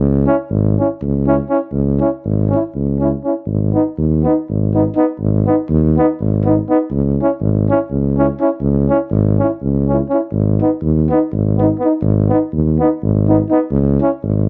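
Restless and bittersweet, this short Balkan brass band fragment in 7/8 sets a mellow tuba, with light vibrato, in the bass from the opening, and trombone and euphonium join at 0.3 s in a classical style. The clear trombone and the tuba are close-miked and sit up front, while the soft-attacked euphonium fills in above them. Light reverb and a dark, warm production frame the trio.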